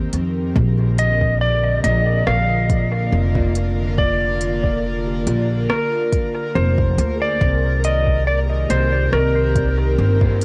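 Spacious and hazy, this ambient dub piece drifts at an unhurried pace with a gentle swing, cut from a longer work. An airy, breathy pad holds sustained chords with a slow attack and long release, its detuned, chorused tone softened by cassette tape, while a woody pizzicato upright bass sits up front from the opening. A soft, overdriven electronic kick joins at 0.6 seconds beneath an organic electronic kit of smooth hi-hats and rim clicks, the kit thrown into dub echo. At 1.0 seconds a clean lap steel guitar takes the melody with slide and volume swells, its tone carried into dub echo as well. A dark, slightly broken-up electric guitar adds very quiet stabs, and from 5.1 seconds a ringing, meditative handpan plays soft arpeggios in a boxy small room. The harmony rests on Cm7 and Bb, and the whole mix carries a light digital ambience with the lo-fi character of a home cassette recording.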